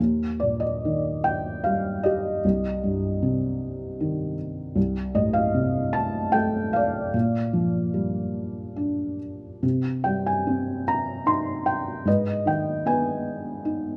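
In a rubato 3/4 lilt at about 70-78 BPM, this tender, calm fragment of lyrical classical solo piano in Eb major, tuned to A4 = 436 Hz, sets a felt-muted upright piano up front, its thick felt giving a dark, mellow, intimate tone with audible action noise, caught by close, detailed microphones in light reverb as the harmony moves from Eb through Cm and Bb6 to a closing Abm.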